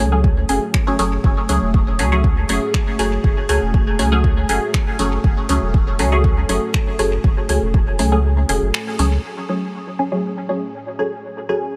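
A light reverb gives this hazy, nocturnal dub techno excerpt a close, smoky space, set at 120 BPM in a straight 4/4 and sitting on an F# minor add9 chord throughout. Muted, detuned sawtooth chord stabs with a quick filter pluck sit up front, soaked in chorus, phaser and dub echo and pumping against the beat. Beneath them, a round sine sub bass holds deep, sustained notes with the same sidechain pumping, while a dark, moody analog pad with a slow attack and long release lingers in the background under its own chorus and phaser. An overdriven, layered electronic kick punches up front until 7.8 seconds, and a deep house kit of finger snaps and hi-hats adds muffled, low-pass-filtered grit with dub echo trailing behind. After a band accent, the sub bass and kit fall away at about 9.2 seconds, leaving the stabs and a filter sweep on the pad to carry the closing moments.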